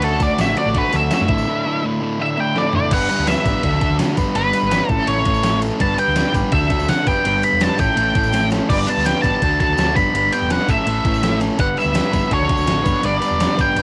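A dark, fuzzed-out lead guitar opens this carefree, jangly indie rock excerpt with a short solo over a Dmaj7 to Asus4 change, and a tambourine joins almost at once, very quiet and bright in its small room. Beneath it, a sludgy overdriven guitar sits up front with a picked riff, while a clean electric guitar adds a compressed, scooped riff far back in the mix and a hollow-body short-scale bass plays a round, amped line. The gated 80s drum machine has a sampler-style sound, with a thumpy kick and a gated-reverb snare, and the whole kit is overdriven and re-recorded in a large room; during a brief break it fills into the next section at 2.6 seconds. From 2.9 seconds the band settles into a steady straight-feel cycle through G6, D, G and A, with the octave-fuzz lead carrying the melody up front and a second drum fill around 8.3 seconds. The whole track has the lightly reverberant, homemade character of a cassette recording, and the fuzz lead and sludgy guitar carry an extra tape grit.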